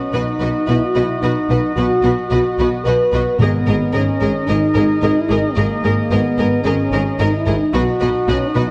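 Set in a moderate scoring-stage reverb, this dark, relentless cut from an epic orchestral film score in G# minor at 110 BPM puts a mellow, up-front French horn section on sustained chords over soft-attack, roomy woodwinds, while a focused violin melody held on D#5 sits in the background above lush second violins, smooth violas, rich cellos and clear, distant double basses, all moving from B to G#madd9 and back, with close, dry timpani striking very quietly between 3.4 and 4.2 seconds.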